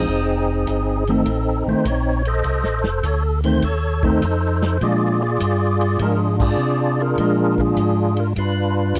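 A percussive, lightly overdriven tonewheel organ carries the melody through a slow rotary speaker and chorus vibrato in this greasy, swinging soul jazz organ trio clip in Bb mixolydian at 101 BPM, with a dark, clean hollow-body jazz guitar comping until 8.1 seconds, a round, mellow organ bass line, and a small-room soul drum kit with dark cymbals entering at 0.7 seconds, all caught in a dry, close 1970s-style studio sound and punctuated by a band accent at 6.3 seconds over chords moving from F7 to Bb7 to G7.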